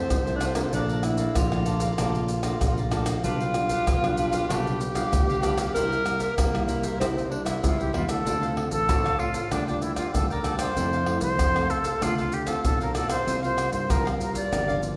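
A church-like hall wraps this bittersweet, yearning samba and choro excerpt in a lingering reverb, with a deep surdo, pandeiro, tamborim and maracas played with soft hands and sitting up front. At 96 BPM in a straight 4/4, a breathy tenor saxophone opens with a dark, whispered solo in jazz style, intimate and full of subtone, scooped notes and vibrato, over chords moving from Fmaj7 through Bbmaj7 and G7/B to C7. A growly, amped fingered electric bass anchors the low end, while a crisp picked cavaquinho and a thumb-plucked classical nylon-string guitar with fresh strings stay in the background. At 7.6 s a silver concert flute takes the melody up front, airy, tongued and a little unsteady, and the saxophone stops at 8.1 s. From 8.3 s the harmony settles into D minor, passing through Dm7, Bb6/D and Fmaj7 before resting on C7sus4.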